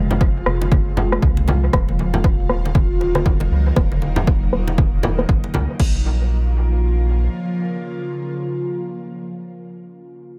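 Afro house at 118 BPM in Bb minor, this short cut from a longer piece carries a warm, spiritual mood over a swung 4/4 groove. An ethereal, airy pad of detuned sawtooth and triangle layers with a noise shimmer holds slow-blooming chords from Fm to Ebmadd9 and finally Bbm at 5.8 seconds, treated with ensemble chorus, phaser, built-in reverb and sidechain pumping. Beneath it, a round analog bass sits deep and up front with a fast attack and its own sidechain pumping, running until 7.3 seconds. A punchy, overdriven electronic kick leads the drums alongside a layered deep house kit with crash cymbal and rim click, its snare, toms and cymbals low-passed and sent into dub echo, while a filter sweep moves across the drums through the opening section. Close, dry congas with hard hands ring out through dub echo, and all the percussion drops away near 5.9 seconds, leaving pad and bass in a dry but echo-heavy mix.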